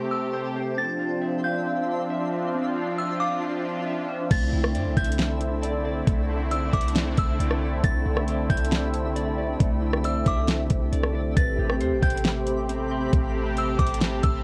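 An airy, detuned sawtooth pad with sidechain pumping opens this ethereal, melancholic cloud-rap fragment at 136 BPM in half-time, joined from the start by a tinkling FM tine bell melody, clean picked electric guitar arpeggios softened by a low-pass filter and carrying analog delay, and a sparkling granular shimmer set in the background, over chords moving from Am7 to Dm9. At 4.3 s a deep, boomy sine 808 bass and an up-front electronic R&B kit arrive, with a knocking kick, fat snare, metallic hats and rim clicks, as the harmony settles on C69 before turning to Am9. The whole recording carries a light reverb and the worn, warbling pitch drift of old cassette tape.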